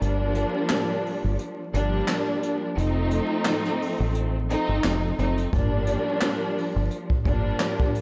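Vinyl crackle and light studio ambience frame this gritty, tough boom-bap hip-hop excerpt in G minor, which moves at 87 BPM with a swung sixteenth feel over a Gm7 to F7 change. A lush bowed string section sits up front, its dark vibrato tone given a cassette-tape haze and filtered at both ends, while a round, foam-muted fingered electric bass punches low beneath it until 7.5 seconds. A distant, roomy brushed drum kit, with a punchy kick, high-tuned snare, hi-hat and handclaps, underpins the groove with its warm, rolled-off top.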